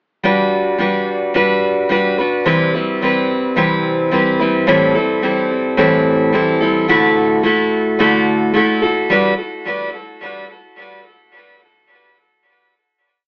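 A straight, even 4/4 pulse carries this short acoustic pop piece, which feels sunny and heartfelt from its first bar. A single picked steel-string acoustic guitar plays alone from 0.2 to 9.3 seconds, sitting up front with a full-bodied, jumbo-sized tone and a touch of digital delay. Its folk strumming on open chord shapes moves through Gmaj7, Cmaj7, Am7 and Dadd9 across one verse before settling on a final Gmaj7 at 9.1 seconds. A moderate studio ambience surrounds the guitar, while an overall AM radio sound colours the whole recording.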